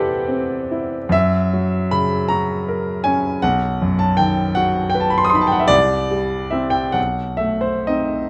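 In a rubato 12/8 that drifts between 40 and 54 BPM in dotted quarters, this brief, melancholic and wistful passage from a romantic classical nocturne features a solo grand piano, smooth, vintage and up front, spanning B1 to D#6 through chords moving from C/E to F#7, B, C and B7b9 in a moderate large-studio reverb over about 8.3 seconds.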